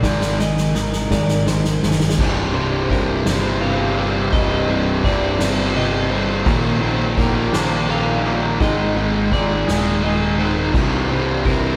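Post-rock in 6/8 at a slow 56 BPM in C minor, brooding and cinematic, this short cut opens with a soft-mallet drum fill that builds for 2.2 seconds, dark cymbals and a boomy kick sitting up front in a moderate stone room. Two fuzz guitars grind out a low riff in the background over a growling, overdriven picked bass. A bright, slightly broken-up guitar and a very quiet, scooped twangy guitar weave arpeggios while a faint, smooth string section holds sustained chords moving from Absus2 through Cmadd9, Ebmaj7/Bb and Absus2 to Cm.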